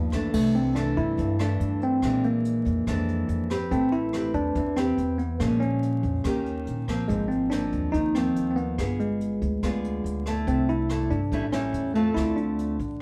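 Romantic and relaxed, this bossa nova excerpt in straight 4/4 moves along at 142 BPM. A fingerpicked nylon-string guitar, classical in tone and placed up front, carries the accompaniment, while a woody, thumpy pizzicato upright bass on steel strings anchors the low end. A jazz kit played with brushes adds dark cymbals, hi-hat, rim clicks and a boomy kick, heard in a natural studio room. The bright tine electric piano takes the melody from 0.3 seconds, clean and direct, sitting forward of the band. The harmony moves through lush colours such as C69, Bb7#11, Ab69 and G7b9. A wet reverb and a distant perspective, dusted with vinyl crackle, give the recording a soft, nostalgic haze.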